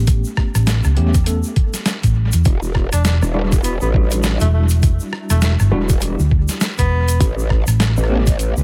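A dry, echo-heavy mix with little reverb frames this short cut from a longer glitch hop piece, swaggering and funky at 101 BPM in 4/4 with a 60% swing on the sixteenths, set in E dorian and moving from A9 to Em9 and back to A9. A round, dark hollow-body electric bass sits up front from the start, joined by a thumpy, pitched-down electronic kick and a gritty sampler-style kit of hi-hat, rim click and a medium-tuned snare with analog delay, while a grainy, bright egg shaker adds texture from a live room. A tine electric piano plays stabs through a combo amp, its clean tone carrying medium tremolo, 12-bit sampler grit, sidechain pumping and analog delay. At 2.5 seconds a growling, saturated growl bass wobbles in through a formant filter and chorus, aggressive and up front. From 2.9 seconds a breathy tenor saxophone takes a whispered, intimate jazz-style solo with vibrato, soft attacks and scooped notes, trailed by analog delay.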